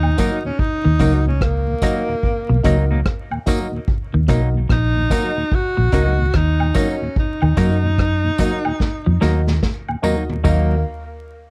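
Laid-back and serious, this short roots reggae excerpt sits on a single E-flat minor chord with a swung sixteenth-note lilt. A breathy, whispered tenor saxophone carries the melody with soft attacks, scooped notes and vibrato, trailed by dub echo. Underneath, a dark, foam-muted fingered bass sits up front with a round, punchy tone. A vintage drum kit in a small, pumping room adds a punchy kick, medium-tuned snare, rim clicks, hi-hat and toms, and it plays a fill from 8.8 to 10.4 seconds. A clean, compressed semi-hollow guitar plays the riff, while a second, very quiet semi-hollow guitar with dub echo provides accompaniment, and a dark grand piano adds stabs that carry audible action noise. A mellow tonewheel organ with chorus vibrato and slow rotary speaker sits in the background, woodblock and tambourine add small-room percussion, and the whole is dry and dusted with vinyl crackle.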